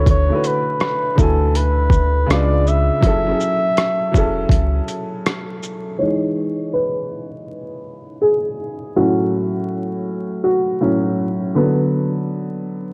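A veiled, bucket-muted trumpet carries a forceful jazz-style melody through the first 4.9 seconds of this nostalgic, dreamy lo-fi hip hop excerpt at 81 BPM in E major, backed by a round sine sub bass, a woody upright piano and a gritty, overdriven boom bap kit with a thumpy kick, rim click, hi-hat and shaker swung on the sixteenths, until the piano takes a solo under a filter sweep from 6.0 seconds, the whole recording carrying vinyl crackle, warbling tape pitch drift and light reverb.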